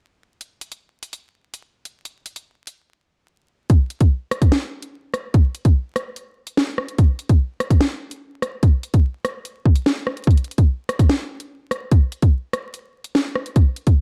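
Cold and tense, this half-time hip hop excerpt at 146 BPM sets an electronic drill drum kit up front, with a hard-clipped kick, sharp snare, bright hi-hats and rim clicks carrying a tape-warm edge over dry vinyl crackle, the kit dropping out from 2.9 to 3.7 seconds before returning for the second section through 14.0 seconds.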